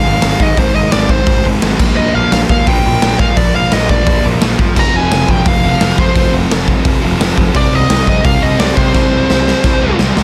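Punk rock at 172 BPM in C minor, raw and angry, with a dark, high-gain lead guitar up front carrying the melody over a sludgy overdriven rhythm guitar riff and a growly fuzz bass sitting in the background, joined by a second, darker riff guitar at 4.7 seconds. A saturated, gritty garage drum kit with a boomy kick and a pumping stone-room sound comes in at 0.2 seconds and closes with a fill from 8.9 seconds. The dry, dense, heavily limited mix moves through Ab, Bb5, F5 and Cm in this short cut from a longer piece.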